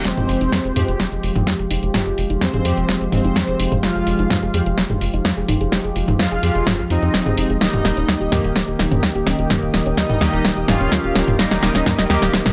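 Up-front, overdriven deep house drums with a punchy snare and pumping hi-hats and toms play in straight four against a deep, very quiet electronic kick, driving this hypnotic melodic techno build-up, cut from a longer piece, with a drum fill and filter sweeps on the arpeggio and brass running throughout. A tight, sawtooth-edged sequencer bass and soft, round pluck arpeggios in the background pulse under bold, fat analog synth brass stabs and a brassy, wave-folded brass melody with ring modulation. Meanwhile, a smooth, detuned supersaw second line sustains above, and a deep, moody ambient pad holds sustained chords moving from Fmadd9 to Eb at 7.6 seconds. The sound is dry and gritty, with chorus, tape echo and sidechain pumping colouring the synths.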